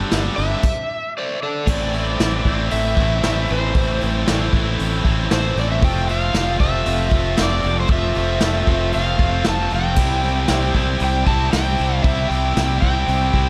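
Brooding and driving, this classic rock excerpt moves at 116 BPM in a straight 4/4 feel in A minor. Two bright, picked electric guitars carry the riff from the start, one distorted with overdrive and slapback echo, the other overdriven with slapback echo and set further back in the mix. An up-front, direct fingered electric bass holds the low end, while a vintage brush drum kit plays with dark cymbals, a medium-tuned snare, a tight kick and a rolled-off top. An overdriven slide guitar, fingered and carrying slapback echo and analog delay, takes the melody from 0.4 s, with a short solo passage and a stop before the main section. At 1.7 s a very quiet tonewheel organ enters with full, lightly overdriven sustained chords, colored by chorus vibrato and a slow rotary speaker, as the harmony moves from Am to F and then C. The whole band sits in a small room with light reverb.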